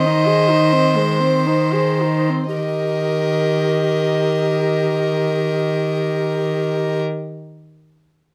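A single violin carries the tender melody with a soft attack, drawing a pure, floating tone over the fingerboard. This short passage from a slow, serene romantic movement for string quartet moves in a lilting 6/8 with free, rubato phrasing, easing back through its opening 2.6 seconds. Just beneath, a second violin sings a rich, up-front inner line, also bowed softly over the fingerboard. A dark viola fills out the accompaniment with vibrato and a nasal, woody colour. A warm cello anchors the bass, its sound smooth on top and placed up front. The four instruments play together throughout, and at 2.6 seconds the harmony settles from an Ab chord over an Eb bass onto the home chord, captured by close, detailed microphones with light reverb.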